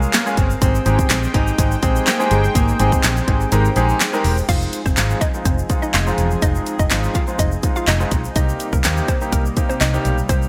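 Dance-pop at 124 BPM in F minor, driving and confident, with a bright 1980s-style digital sheen. A fingerpicked nylon-string guitar carries the opening melody until 3.7 seconds over a clear concert grand piano, a shimmering chorused pulse-width pad, a dark, foam-muted fingered bass and a grainy egg shaker, with the piano, pad and bass all pumping against the punchy, gated-reverb pop drum kit and its handclaps. The kick drops out briefly before the harmony shifts to Fm7 at 4.5 seconds, where a hollow, warbling square-wave pluck with chorus and delay takes over the melody.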